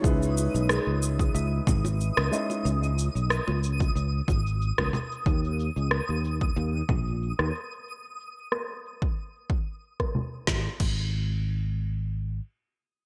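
Sunset chillout at 92 BPM with a gentle swing, relaxed and warm, cut from a longer piece: a dark, boxy baby grand piano with audible action noise and a soft, round pluck playing arpeggios over a C#m9 chord, both gone by 2.7 seconds, while a twinkling granular texture shimmers high above until 7.9 seconds and very quiet, low-tuned bongos add close hand percussion. An up-front fretless electric bass with tube saturation carries on to 12.4 seconds alongside a punchy electronic kick and a deep house kit of woody snare, rim click, congas, shaker and crash under low-pass filtering, gated reverb and a filter sweep, the harmony moving to D#5 at 5.3 seconds. The production has a bright 1980s digital sheen and a moderate plate reverb; the chords drop out at 10.5 seconds, and the drums stop at 11.0 seconds.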